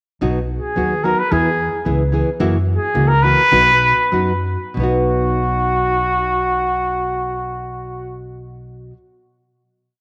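A trumpet with light vibrato and a distant, roomy tone carries the song-like phrases of this short, proud and romantic mariachi piece, entering at 0.6 seconds in a classical-style solo that sits up front. Beneath it, a dark nylon-string guitar mixes fingerpicking, audible finger squeaks and chop strumming on open chord shapes, while a woody, growly pizzicato upright bass plays root and fifth on the main beats. The piece slows from 2.4 seconds and settles into a final chord at 4.8 seconds, all bathed in a wet echo chamber reverb.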